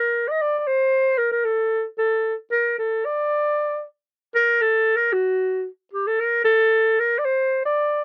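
Festive yet soulful, this short klezmer excerpt cut from a longer piece moves at 114 BPM in a straight 2/4 in D phrygian dominant, tuned to A4 = 443 Hz, with a breathy, subtoned solo clarinet up front, carrying light vibrato and a vintage jazz-style touch from F#4 to Eb5, in a dry, close 1970s-style studio sound with light reverb, its line shifting into a new section at 4.1 seconds and continuing to 8.0 seconds.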